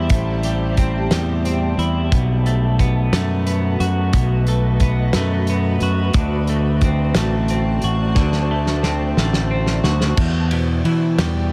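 A blurred, detuned granular pad hangs in the background as a twelve-string electric guitar picks clean, compressed arpeggios up front, with a growling, overdriven fingered bass beneath, all soaked in a huge ambient reverb for a cinematic, melancholic post-rock excerpt in E minor at 60 BPM in 6/8. A loose indie drum kit with a fat snare, punchy kick and dark cymbals drives the Am7, B7 and D7 changes, playing a fill from 8.2 to 10.2 seconds. At 10.2 seconds the music lands on Em7 and begins to build.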